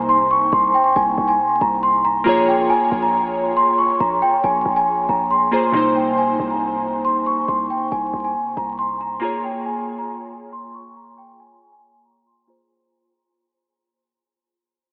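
A large celesta leads this melancholic, brooding trap-flavored hip hop passage, its bell-like, delicate melody ringing up front in the G5 to Db6 range and trailed by analog delay. Underneath, glassy digital keys with a warbling, vintage chorus carry the accompaniment, while a deep, boomy 808-style bass anchors the low end until it drops out at 9.2 seconds. The groove sits at 138 BPM in a half-time 4/4 feel in C phrygian, moving between Cm7 and Bbm7. The mix is dreamy and soaked in a huge ambient reverb, dusted with vinyl crackle and narrowed by a low-pass filter into an AM radio sound. From 5.7 seconds the second section begins as a filter sweep and fade-out carry this fragment, cut from a longer piece, to its close at 12.7 seconds.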